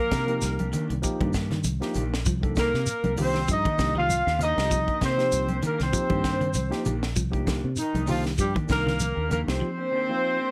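Defiant and hypnotic, this short afrobeat excerpt at 98 BPM in C minor rides a single Cm9 chord, with a warm, tight horn section leading up front in octave doubling over a breathy, reedy pan flute second line, clean picked semi-hollow guitar arpeggios bathed in spring reverb, dark fingered guitar stabs, round foam-muted fingered bass, a tight funk drum kit with a high-tuned snare, damped congas, grainy shekere and a clean tine electric piano, all in light reverb.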